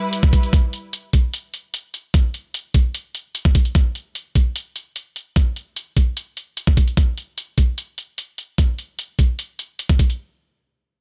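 A brief burst of lush, bowed symphonic strings with vibrato, roughened by 12-bit sampler grit and sidechain pumping, sounds only until 0.5 s in this menacing, chaotic half-time heavy wobble dubstep fragment, overlapping with bright hi-hats entering at 0.1 s and an up-front, overdriven knocking kick at 0.2 s, which carry on to the end in a dry, small-room sound.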